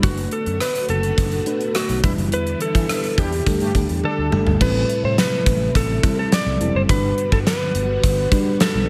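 A gated 80s drum kit stands out in this short cut from a 1980s-style pop track. Its fat snare, punchy kick and bright cymbals sit up front in a bright stone room, with rim clicks, toms and crash rounding out the kit, and a band accent from 2.3 seconds runs into a drum fill that enters at 4.0 seconds. At 105 BPM in a straight 4/4 and G major, the mood is nostalgic and uplifting as the chords move from Bm7/F# through Em7 and Dsus4 to Am7 and Gmaj7. A lightly driven lead guitar carries the melody with a dark, slightly broken-up, compressed tone and delay, while a sustaining fretless electric bass adds growly, amped low end. An FM electric piano layered with a soft pad gives lush, dreamy accompaniment with chorus, and a string machine ensemble holds mellow sustained chords in the background. Bold, warbling analog synth brass stabs with a filter sweep appear briefly from 3.2 to 4.3 seconds, and the whole mix sits in a studio reverb.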